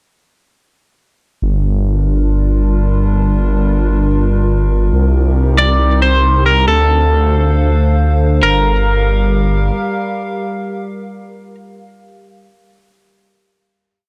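IDM in free time and G minor, cerebral and melancholic, this short piece opens at 1.4 seconds with a deep, rumbling detuned saw bass holding saturated, beating root notes up front. A warbling, lo-fi pad with chorus, its own reverb and vintage 12-bit sampler grit carries nostalgic sustained chords through Gm7, Cm7 and Dm7. From 5.6 seconds a bright, twangy twelve-string electric guitar picks clean, compressed motif phrases through tape echo, and everything comes to rest on a final Gm7 from 8.4 seconds, set in a dry, gritty digital ambience.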